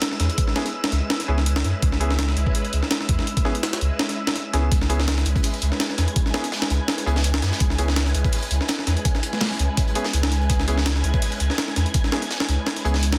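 A frenetic, dark drum and bass excerpt with a jungle edge opens on a pitched-up, thumpy sampler break, silky string-machine chords treated with phaser, ensemble chorus and 12-bit sampler grit, and a breathy wind-like noise texture with built-in reverb in the background, joined at 0.2 s by a thick, saturated sub bass up front and at 0.6 s by clear grand piano stabs trailing dub echo, before a second, crunchy acoustic break with high-passed hats and snare slips in behind at 4.7 s, all within a small room ambience and a dense, heavily limited master.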